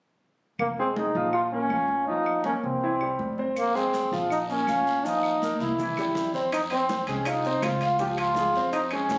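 Captured on a phone in the room with compression and a moderate studio reverb, this fiery, passionate salsa clip in F minor at 162 BPM puts a bright, roomy solo trombone with slapback echo up front over a brilliant concert grand piano with audible action noise, a thumpy gut-string pizzicato upright bass, woody claves and ringing high-tuned congas, adds raspy guiro and grainy maracas at 3.6 seconds, and, after a drum fill, brings in round low-tuned bongos and metal-shell timbales at 6.5 seconds as the chords move from Fm7 to Dbmaj7.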